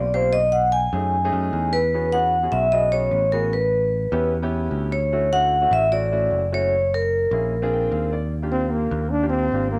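A metallic, ringing vibraphone with slow motor vibrato and slapback echo carries the melody up front in this sophisticated, lively jazz cut at 150 BPM, backed by natural, long-sustaining grand piano chords (with a piano fill at 7.5 s) and a direct, punchy picked electric bass, before a warm, forceful, close-miked trombone with scooped notes takes a short solo from 8.5 s, all set in a moderate echo-chamber reverb.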